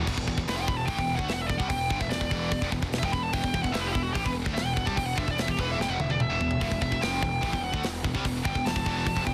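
An up-front, high-gain lead guitar solos from 0.5 s over an epic, heavy metal excerpt in E minor at 147 BPM, backed by a double-tracked, distorted riff guitar in the background, a very quiet second high-gain guitar that rejoins at 6.6 s, a growly, punchy fuzz bass, and a tight studio drum kit with bright cymbals and a fill at 5.8 s, set in light reverb within a dense, heavily limited modern master.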